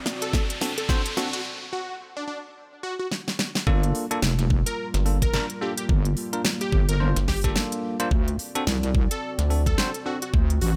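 Playful and gritty, this glitch hop excerpt moves at 108 BPM in G minor with a swung sixteenth-note feel, cut from a longer piece. A moody, dark analog pad with chorus and sidechain pumping sits in the background holding sustained chords. An up-front riser and drum fill open a build-up over a D7 chord, with a knocking electronic kick, a fat snare and crisp hats in a small room ambience. A punchy, catchy detuned lead carries the melody through phaser, cassette tape and dub echo, while a bell-like tine electric piano adds clean stabs with its own dub echo and pumping. A break from 1.4 s gives way at 3.7 s to the drop on Gm7, where a heavy, saturated wobble bass enters, joined at 4.9 s by a rubbery, nasal square bass before the harmony returns to D7. The mix is dry, with little reverb overall.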